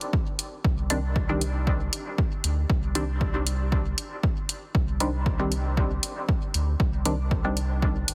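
A heavily compressed, radio-like sound with light digital ambience frames this short cut from a longer dub techno piece, which sits in C minor at 117 BPM in 4/4 with a slight swing on the sixteenths. The mood is deep and cavernous, resting on a single Csus2 chord throughout. An overdriven electronic hi-hat opens at 0.0 seconds and a punchy, layered electronic kick follows almost at once, both sitting up front with studio reverb. A round, sine-based sub bass enters at 0.6 seconds, moving between G1 and D2 with a fast attack, a sustained tone and sidechain pumping. At 0.9 seconds a muted, detuned sawtooth chord stab arrives between Eb3 and D4, its filter-plucked, decaying hits coloured by chorus, phaser, sidechain pumping and dub echo. The stab sits lowest in the mix.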